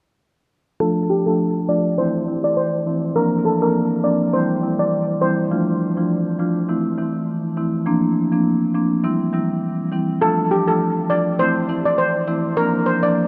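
Sultry and hypnotic, this short dancehall excerpt at 102 BPM in D minor, with a lightly swung 16th feel, sets a metallic, shimmering double-seconds steel pan played with medium rubber sticks on the melody from 0.8 to 5.4 seconds and again from 10.2 seconds, over an up-front marimba with medium mallets holding down the accompaniment through a Dm–Am–Bbadd9–C cycle, both filtered and soaked in a dreamy cathedral reverb, with analog delay on the pan and a filter sweep running throughout.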